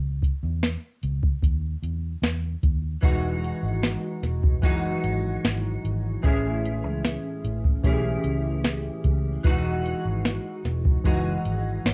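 A soft vintage rhythm box sits up front with a deep kick, tonal snare and metallic hats, alongside a dark, round, foam-muted fingered bass from the opening, in this dreamy, nostalgic cut of bedroom-style indie pop. At 3.0 seconds a bright, twangy clean electric guitar with ensemble chorus and warbly pitch drift enters together with detuned, mellow lo-fi synth keys colored by chorus and cassette tape, as the harmony moves from C#madd9 through Emaj9 and Amaj7. Light reverb and the lossy grain of a home cassette recording give the whole a homespun haze.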